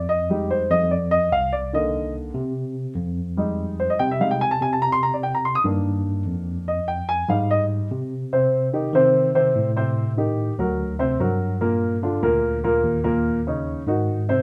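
A dark, mellow baby grand piano leads this fiery, sophisticated Afro-Cuban jazz excerpt, taking a solo over the opening 8.3 seconds as harmonies shift between Fm9 and Cm9 before moving through Am7b5, Daug7 and Gm to close on Ebm7. Beneath it, a worn, slightly out-of-tune tine electric piano carries the bass line, its clean tone heard as if through built-in speakers. Both keyboards sit up front in a light reverb, with the grand's short sustain and natural tone shaping its playing.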